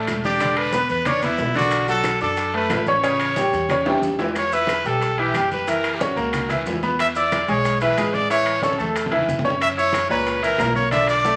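Vinyl crackle and a moderate studio reverb frame this festive, joyful salsa excerpt, where a close-miked trumpet carries the solo melody up front over a brilliant, slightly worn concert grand piano with audible action noise and deep bass. Underneath, a woody, thumpy pizzicato upright bass with gut strings holds the low end, while low-tuned congas, ringing, distant timbales and grainy, vintage maracas sit in the background, and tight, high-tuned bongos, dry claves and a raspy guiro sit very quietly in the mix. Drum fills arrive at 3.4 s and 8.6 s as the chords move through Bm7, A7, Em and F#7.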